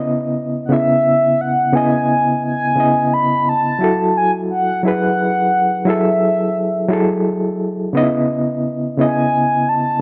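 A slow, straight 6/8 sway carries this yearning, sultry R&B piece, cut from a longer work, with a gritty, reedy electric piano up front from the start, its fast tremolo and combo-amp drive coloring the minor ninth chords. At 0.7 seconds a round, horn-like sawtooth synth lead enters to carry the melody in a high register, its soft attack, sustained notes, vibrato, filter sweep, chorus and slapback echo giving it a mellow glow. Light reverb sits around the pair.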